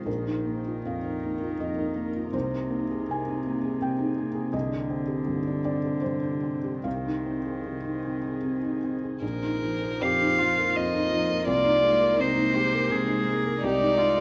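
Bathed in a moderate large-studio reverb, this melancholic, longing neoclassical fragment in 3/4 drifts rubato at 71-85 BPM, with a mellow, felt-muted upright piano up front, its action noise audible, beside a sul tasto cello's smooth, floating second line and a faint, ethereal pad of detuned, chorused chords, until at 9.2 s an intimate, lightly vibrato violin takes the melody over a pure, background viola.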